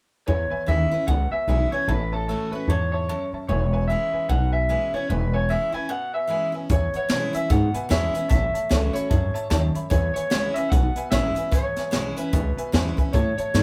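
Rowdy and rollicking, this excerpt of swung rockabilly in E major moves at 149 BPM, with a twangy, slightly broken-up electric guitar carrying the melody up front over a thumpy gut-string upright bass, a bright dreadnought acoustic guitar and a clear, slightly detuned upright piano with long sustain. After a short break from 5.9 to 6.7 seconds, a jazz kit played with brushes joins at 6.7 seconds, bringing a high-tuned snare and boomy kick. The band sounds live in one room with light reverb, and the chords move between E6 and A6.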